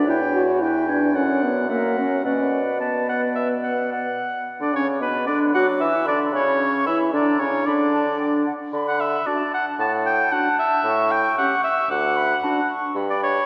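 Bathed in a wet church reverb, this cheerful, lively excerpt from a quick classical-period movement for wind quintet moves at 113 BPM in B minor, opening on E minor before settling toward D major. The airy, crisp-edged silver flute carries the melody from a distance. An up-front oboe with a smooth top sings the second line, while the clear French horn and a roomy clarinet in the background fill out the accompaniment, and a soft-attacked, vintage-toned bassoon anchors the bass. Horn and clarinet drop out at 12.6 s, leaving flute, oboe and bassoon to close by 13.5 s.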